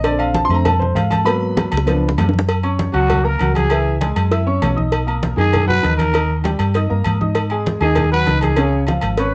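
A growling, raspy trumpet takes the solo from 2.9 seconds, its mellow tone carrying vibrato, scooped notes and a soft attack while sounding distant and roomy yet up front in the mix. This is a danceable, sophisticated slice of Afro-Cuban jazz in F# major, moving briskly at 197 BPM in a straight 4/4. The opening features a smooth, vintage grand piano with long sustain, taking the lead over the bass and percussion, with a drum fill arriving at 1.6 seconds. The harmony travels through rich chords such as A#maj9, G#m9 and C#7b9 before settling on F#, Bmaj7 and G#m7. Underneath, a dark, round hollow-body electric bass sits up front. The percussion includes tight, high-tuned cowbell and bongos, ringing, band-limited agogo bells and timbales with a metal-shell character, and low-tuned congas struck with hard hands in the background. Light reverb and close, detailed miking frame this excerpt, cut from a longer piece.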